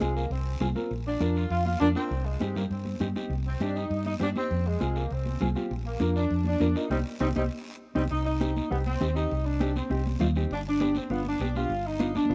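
Fiery and passionate, this cumbia excerpt drives along at 200 BPM in a straight 4/4, set in C minor and moving to C harmonic minor at 8.1 s, with a G chord arriving at 10.5 s. A tight, up-front saxophone section carries the melody with vibrato, a soft attack and a smooth, jazz-styled top, over a round, dark hollow-body bass played with the fingers and a mellow, clean, compressed electric guitar accompaniment. Bright, high-tuned congas struck with hard hands sit in the background beside a raspy, close guiro, with a band accent and fill starting at 6.9 s, all set in a light reverb.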